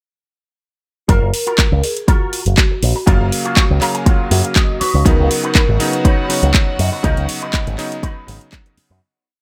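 A four-on-the-floor nu-disco groove at 121 BPM in F# major, sunny and lightly swung, opens at 1.1 seconds with a punchy, up-front electronic kick, a house kit of clap and metallic hats on a disco backbeat, and a round, syncopated picked bass through an envelope filter with tube saturation. Over the F#maj7 to C#9sus4 changes, an envelope-filtered electric guitar plays a twangy funk chord riff with ensemble chorus, while a dark, ringing vibraphone with delay sings call phrases, and a clean guitar fill appears from 3.6 seconds. A cutting electric grand with a clangy bass adds held chords with syncopated pushes from 3.1 seconds, reedy gut-string chamber strings with sidechain pumping hold a high note in the background from 5.1 seconds, and the whole piece fades out from 6.4 seconds.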